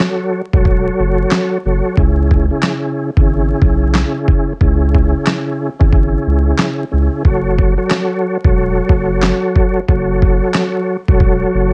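Vinyl crackle and light reverb frame this reflective, dark boom-bap hip-hop cut at 91 BPM with a 16th-note swing, where a gritty, compressed sampler-style drum kit sits up front with a thumpy kick, a medium-tuned snare and handclaps, a round, deep dub sub bass enters at 0.5 seconds, and a flute-like tonewheel organ, shimmering with chorus vibrato and fast rotary speaker, carries chords that move from F#m to C#m and back to F#m at 7.2 seconds.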